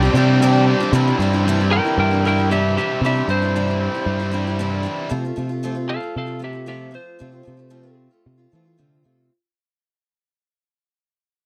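A twangy, slightly broken-up lead electric guitar carries a compressed solo melody up front, fading out across a short folk rock and heartland rock fragment at 115 BPM in straight 4/4 C major, tuned to A4 = 435 Hz, with an open-road, hopeful mood. Beneath it, a boxy parlour steel-string acoustic guitar with fresh strings picks through the Csus2, Cadd9 and F/C changes, while a double-tracked overdriven electric guitar riff drops out at 5.1 seconds and the lead stops at 8.0 seconds. A growly, punchy picked bass anchors the low end, and the dry, close 1970s-style studio sound keeps every part bright.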